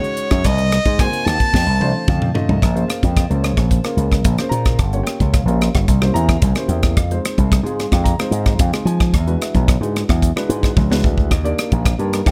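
A floating, soft-attacked bowed violin opens this nocturnal, driving electric jazz fusion excerpt in Bb minor at 110 BPM in straight 4/4, over a dark, mellow baby grand piano and a crisp, airy drum kit with a high-tuned snare and punchy kick; bright, envelope-filtered slap bass joins at 0.3 seconds, and after the violin stops at 2.1 seconds, during a drum fill, the piano, drums and bass drive on through the changing jazz chords under light reverb.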